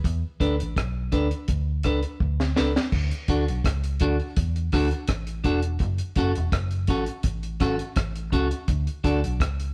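Recorded live in one room onto cassette tape, this short roots reggae excerpt carries a moderate stone-room reverb around a hypnotic, serious groove at 83 BPM in a straight 4/4. A deep reggae drum kit sits up front with a dry, dark character, a high-tuned snare, a tight kick, rim clicks, hi-hat and crash cymbal, its top end rolled off. A vintage muted fingered electric bass, amped, foam-muted and round, holds the low end between E1 and E2 for the full 9.7 seconds. A clean electric guitar enters at 0.4 seconds with a picked, warm accompaniment in the C#4 to B4 range. The harmony opens on a rootless E7sus4, and a drum fill from 2.2 to 2.9 seconds leads into a new section that moves through D, F#m and back to D.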